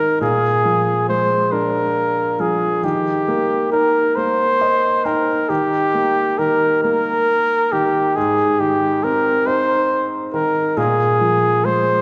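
Bathed in the long, wet reverb of a church or concert hall, this tender children's lullaby in a rubato 6/8 places a warm, close-miked solo flugelhorn with light vibrato up front on the melody, over the soft, mellow chords of a felt-muted upright piano whose thin, vintage tone adds a gentle fill from 4.2 to 5.5 seconds in this fragment cut from a longer piece.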